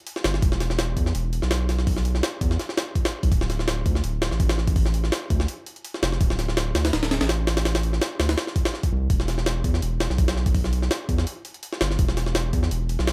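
Swung 16ths at 166 BPM from a gritty, compressed, pitched-up sampler-style jungle kit (thumpy kick, high-tuned snare and hi-hat, re-recorded in a large room) drive this frenetic, nostalgic drum and bass fragment in E phrygian, joined at 0.2 seconds by a deep, thick, sustained sine sub bass with tube saturation spanning D1 to E2, both parts up front in a dry mix dusted with vinyl crackle.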